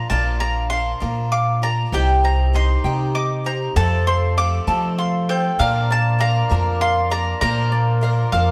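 A round, double-strung mandolin carries the melody up front in this anthemic folk piece, a short fragment cut from a longer performance in a straight 6/8. Beneath it, a pizzicato upright bass with gut strings gives a woody, thumpy, dark pulse, also placed up front. A picked twelve-string acoustic guitar adds boxy, shimmering, octave-doubled accompaniment with a swing feel and audible finger squeak, while a bright, light ukulele fingerpicks arpeggios alongside. The opening stretch builds up until 5.6 seconds, when a reedy, nasal hand-pumped harmonium enters in the background with sustained, breathing chords that carry a vintage, band-limited character. The band plays live together in one room, and a wet stone-room reverb gives the whole performance a warm, communal glow.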